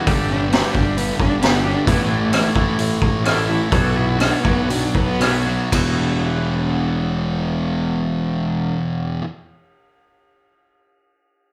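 A twangy, clean electric guitar plays tremolo-tinged arpeggios in the background while an up-front fuzz guitar grinds out a compressed, distorted riff, joined almost at once by a growly overdriven fingered bass and a raw garage drum kit with a boomy kick, high-tuned snare and saturated, rolled-off top. In this brooding, angsty stretch of quiet-loud alternative rock, a rich bowed cello sings an expressive melody with vibrato, portamento and slapback echo from the background as the band slows between 1.9 and 5.7 seconds over suspended and minor add-nine chords. The drums and cello drop out near 5.7 seconds, leaving the guitars and bass to carry the next section in a lightly reverberant live room.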